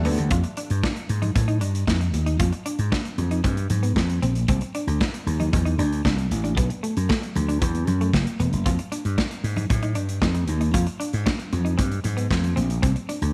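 A straight 4/4 groove drives this slick, danceable early-eighties boogie funk fragment, with a bright, amped slap bass up front, a modern studio drum kit of punchy kick, medium-tuned snare and hi-hat in a pumping room, very quiet high-tuned, compressed congas struck by hard hands, and a dark, slightly broken-up electric guitar riff coloured by tube saturation and lush chorus, set in light reverb as the chords move from Fm9 through Cmadd9 and Bm7 back to Fm9 before reaching Csus2.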